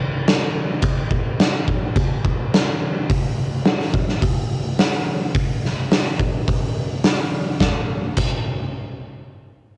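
An oversized, low-tuned acoustic drum kit enters at 0.3 s and plays a raw, menacing straight-4/4 rock groove at 106 BPM, its punchy kick, medium-tuned snare, hi-hat and dark crash sitting up front in a big, pumping room with light reverb, saturated and gritty and colored by the cassette tape of this home recording, until it stops at 8.3 s in this fragment cut from a longer piece.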